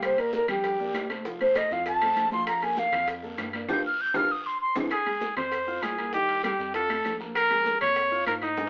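A driving salsa groove in straight 4/4 at 197 BPM sets a danceable pulse. Ringing metal-shell timbales sit forward in the percussion, while high-tuned congas, tight bongos and a raspy guiro fill the background, with woody claves and grainy maracas very quiet underneath. A dark, intimate grand piano, with audible action noise, carries the accompaniment, and a round analog bass gives a deep, sustained floor. A breathy, reedy concert flute leads up front with vibrato and a crisp attack, playing a solo that ends at 4.8 seconds, as a band accent and a drum fill close out the opening section. At 4.9 seconds a punchy trumpet with light vibrato and a smooth top takes over the melody. The band sounds as if it is playing live in one room, with moderate studio reverb and an AM-radio colour, and the recording is a short cut from a longer piece.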